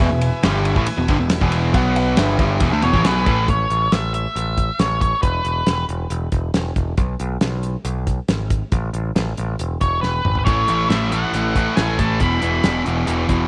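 This driving, sunny classic rock excerpt in E mixolydian at 138 BPM opens with a dark, woody upright piano, a very quiet, bright tonewheel organ on a slow rotary speaker, a compressed overdriven electric guitar and a sludgy distorted guitar both playing a low riff over a growling, overdriven picked bass and a damped 70s drum kit with a fat snare and tight kick. At 2.8 seconds the piano plays a fill and a dark octave-fuzz lead guitar takes the melody up front, while bass and drums carry the groove through chords on A, E5 and G#m after piano, organ and riff guitars drop out. The riff guitars return at 10.5 seconds, just after a drum fill, in a small room with light reverb.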